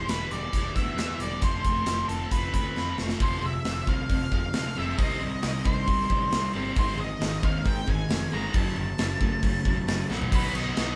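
A straight 4/4 pulse at 135 BPM drives this cathartic, angsty slice of quiet-loud alternative rock, anchored by a big, up-front acoustic drum kit with a punchy kick, medium-tuned snare and bright cymbals, plus a growly, fuzzed electric bass. A dark octave-fuzz lead guitar carries the melody over a scooped high-gain guitar riff and a full-bodied steel-string acoustic guitar picking arpeggios in the background, its finger squeaks audible. At 3.2 seconds, after a drum fill, a sludgy overdriven guitar joins in the background as the harmony moves through Fm, Cm, G# and F#m, with another fill arriving at 10.1 seconds, all played live in one room with moderate reverb.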